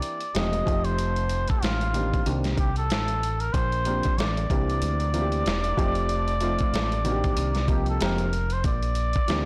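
Jazz-hop at 94 BPM in Bb major with a cool, swung 16th-note feel, this short excerpt sets a veiled, cup-muted trumpet melody with vibrato, scooped notes and slapback echo over a worn, woody, slightly detuned upright piano, a gritty, compressed sampler-style drum kit with a thumpy kick, and a dark, round fingered electric bass with tube saturation entering at 0.4 seconds, all in a blown-out, overdriven recording with light reverb.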